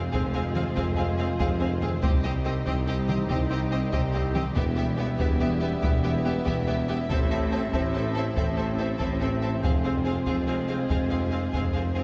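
In a 12/8 metre, a close, dry taiko ensemble struck with heavy sticks drives this relentless, epic orchestral film-score cue, cut from a longer piece, with hard-mallet timpani barely audible for a moment around 7.1 seconds. Dark, distant French horns and a smooth, rich string section hold sustained chords over a low bed of clear cellos, a mellow tuba and a rich double bass section. Above them a bright, focused violin section carries the melody in the background, joined by a close second violin line and intense violas, all washed in the ample reverb of a scoring stage heard from further back in the room.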